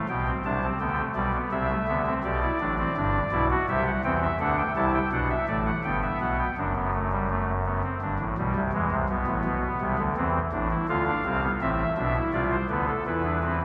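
Lively and joyful, this excerpt of a baroque-style three-part fugue for pipe organ moves at 83 BPM in 3/4 with a straight feel: a solo soft reed voice on an oboe stop, with baroque voicing, crisp chiff and tremulant, sits up front across a range from F#1 to A5, bathed in a lush cathedral reverb with a 4.6-second decay, as the harmony moves from G major through D7 and E7 to A minor and D minor before landing on an E5 chord at 13.1 seconds.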